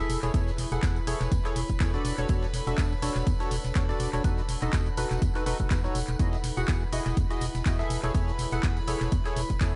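A hollow, mellow organ stab riff opens this feel-good, euphoric piano house excerpt at 123 BPM. It arrives with chorus and tape echo over a dark, organ-like FM bass and a background violin section holding sustained chords, all three pumping against the sidechain. The chamber strings have a reedy, gut-string tone with light vibrato. A deep, moody pad with slow attack and built-in reverb sits very quietly beneath. From 0.3 seconds a punchy, up-front electronic kick drives the 4/4 groove, swung at 55% on the 16ths. A house kit supplies handclaps and tape-warm hats alongside a gritty sampler-style break with a high-tuned snare and a tambourine in the background. The harmony moves through Amaj7/E, Dmaj7/E, B7/E and Emaj9 over a dry, echo-heavy mix with a rolled-off top end.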